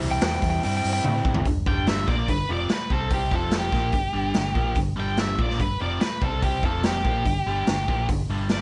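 An up-front octave-fuzz lead guitar carries the melody from 1.7 seconds, its picked, distorted tone warm, in this swaggering slice of blues rock and southern rock played in straight 4/4 by a power-trio lineup. Before it arrives, a lightly driven lead guitar with a bright, twangy, compressed and slightly broken-up edge takes a short solo on a high G from 0.1 to 1.5 seconds, while the raw garage drum kit plays a fill just before the fuzz guitar takes over. Underneath throughout, a biting overdriven guitar, picked and double-tracked, plays the riff, and a hollow-body short-scale bass, fingered and amped, adds a dark, round low end. The drums sit up front with a punchy kick, a medium-tuned snare and a pumping small-room sound that is saturated with a rolled-off top, using hi-hat and toms as well. The harmony moves from C to G5, then cycles through C5, F5 and G5, and the dry recording with muted highs is a cut from a longer piece.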